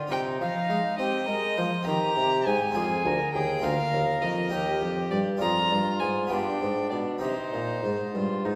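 A 6/8 pulse moves at 68 dotted-quarter beats per minute with a straight feel, setting an introspective, flowing mood in this baroque-style sonata movement in C minor, cut from a longer piece. Up front, a warm, reedy violin carries the melody high in its register, its gut-string tone shaded with light vibrato in period style. Beneath it, a second violin plays a dark, nasal line that sits more distant in the blend. A mellow bassoon with vibrato and a smooth top supplies the bass, while a full-bodied Italian-style harpsichord plucks the continuo accompaniment on two sets of strings. The harmony travels from C minor through F minor, E-flat and a G7 before settling back on C minor at 7.2 seconds, all heard from further back in a reverberant recital hall.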